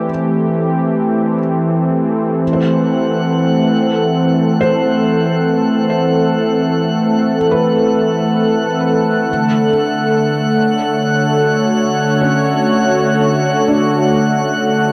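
Soaked in a huge, dark reverb, this ambient passage, cut from a longer piece, has a luminous, warm mood. A smooth, detuned sawtooth pad with chorus sits up front, holding sustained chords that move from Am7 through Am to Dmaj7, while a soft, felt-muted upright piano plays mellow arpeggios through delay in the background, its action noise audible. At 2.6 seconds a glassy, bright texture of drifting sine overtones joins, carrying chorus and its own reverb.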